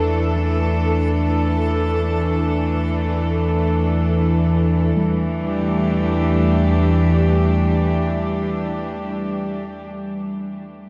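Dark ambient drone in free time and E minor, ominous in mood, heard as a short cut from a longer piece. A deep, rumbling synth drone sits up front with a warbling, vintage edge and its own reverb, carrying a filter sweep through the opening 5.0 seconds. A rich studio cello section holds sustained chords beside it, its bowed ensemble tone biting and earthy with light vibrato and a smooth top. Very quiet beneath them, a quartz singing bowl rings out meditative arpeggios with pure, slowly beating tones in a boxy small room, while a reversed, dreamy granular texture, bright but faint, swells until 5.0 seconds. The harmony stays unanchored until an E minor chord arrives at 5.0 seconds, all of it set in a huge, wet reverb within a warm mix.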